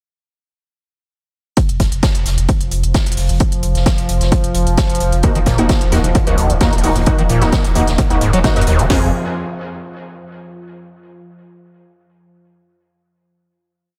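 Driving, dark peak-time techno in which an up-front, overdriven drum kit with a heavy four-on-the-floor kick and cracking snare, a smooth overdriven electronic hi-hat and a soft-mallet acoustic kit's looped breakbeat enter at 1.6 s, quickly joined by a thick, saturated sub bass rumbling between the kicks and then a moody sawtooth pad drone, until at 5.2 s a squelchy, distorted acid bass line with accents and slides and bright, detuned rave stabs in dotted-rhythm parallel chords arrive, the reverb-soaked, dreamy mix closing on a final chord.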